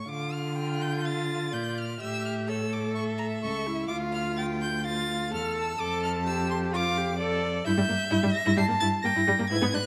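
Restless and urgent, this quick classical-period string quartet movement in D minor at 127 BPM moves with a rubato feel, the first violin carrying a rich, focused, vibrato melody high above a smooth second violin line, a close, focused viola accompaniment and an up-front, even cello bass, all bowed by single players and set in a moderate scoring-stage reverb as the harmony passes from Dm through A7 to Edim/G in this short cut from a longer piece.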